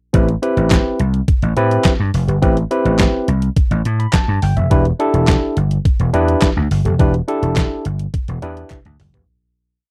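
Early-eighties boogie funk in A minor at 105 BPM, danceable with a late-night feel, built on a detuned 8-bit digital drum machine whose thumpy kick drives a four-on-the-floor beat, its medium-tuned snare layered with clap, alongside hi-hat and toms. A punchy, amped vintage slap bass lays down a fat syncopated line up front, while a barky tine electric piano, lightly overdriven through a combo amp, plays syncopated rootless chord stabs with short fills over Am9 moving to Em7 at 4.7 seconds. Crisp human group handclaps sit in the background on the backbeat from 0.7 seconds, and the dry, close studio sound fades out from 7.0 seconds as a drum fill closes the piece.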